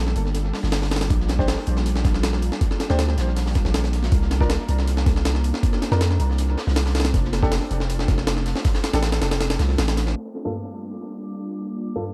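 Nostalgic and raw, this drum and bass excerpt with a jungle flavour runs at 159 BPM in G minor, driven by an up-front, gritty, pitched-up sampler drum kit with a thumpy kick and tape echo, a faint crunchy breakbeat kit with a saturated, rolled-off top, and a deep, long 808-style sine bass. A dark, mellow grand piano plays stabs through dub echo while an ethereal, detuned pad sustains chords in the background with ensemble chorus and vintage 12-bit grit, moving through Gm7, Bb6, C9sus4 and F6. The kick drops out at 9.4 seconds, and from 10.2 seconds a filter sweep moves over the pad before a glassy, drifting harmonics texture enters at 10.6 seconds in an echo-heavy, low-passed mix.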